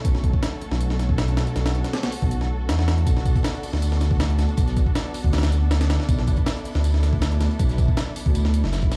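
A sampler-style breakbeat kit, a rumbling detuned saw bass and a hushed string section all open this atmospheric, brooding slice of drum and bass and jungle, cut from a longer piece. Up front, the compressed, pitched-up break carries a thumpy kick, a high-tuned snare and hi-hat with a tape-warm edge, while the deep sawtooth bass beats with unison detuning and holds its sustained notes low. Behind them, a dark, woody ensemble plays bowed sul tasto chords with vibrato and a lush sheen, moving from A over B to B minor seventh at 3.1 seconds. At that moment a second, saturated acoustic breakbeat kit enters in the background, a gritty, mid-forward layer of hi-hat, medium-tuned snare and tambourine with a rolled-off top and filtered thin. The whole mix sounds as if played on a big sound system in a bare stone room, dry overall but carrying that room's echo and a bed of vinyl crackle.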